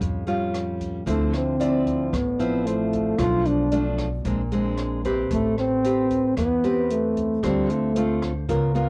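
A dark, forceful trombone carries the melody in this romantic, sunny bossa nova fragment, entering at 1.1 seconds up front with light vibrato, a punchy attack and a smooth top, all colored by cassette tape. Beneath it, a classical nylon-string guitar is fingerpicked close and warm, while a pizzicato upright bass on steel strings adds a woody low end. An open jazz kit keeps a straight feel on hi-hat, rim click and a boomy kick, sounding natural in a small room. An intimate grand piano sits in the background with audible action noise and plate reverb, playing until 4.5 seconds and returning briefly at 8.0 seconds. The harmony moves from Aaug7 through Dm9, Bm7b5, Bb9 and Am9 to Dm7, all captured as a home cassette recording with a modest booth ambience.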